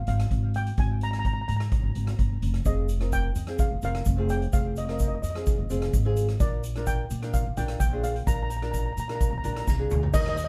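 Lightly reverberant and heard from a little further back in the room, this carefree, sunny calypso fragment opens with a shimmering, metallic lead steel pan carrying the melody through a tape echo, over a woody, thumpy pizzicato upright bass and a polished, airy street-band drum kit with a boomy kick and dark cymbals. A grainy egg shaker slips in quietly behind at 2.6 seconds, and a small, fingerpicked nylon-string guitar joins at 2.7 seconds to comp through Fm7 and Bb. The drums close the passage with a fill at 9.7 seconds.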